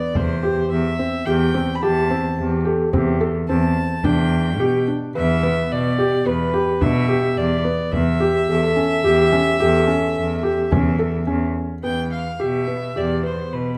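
Urgent and hypnotic, this contemporary chamber piece in E minor moves at 108 BPM in a straight 7/4. A nasal, earthy bowed violin carries the melody over soft, muted upright piano arpeggios with audible action noise, a rich, focused cello bass up front, and a frame drum played with soft hands in the background, while a mellow French horn enters at 2.4 seconds with a roomy second line, the ensemble heard in a moderate recital hall.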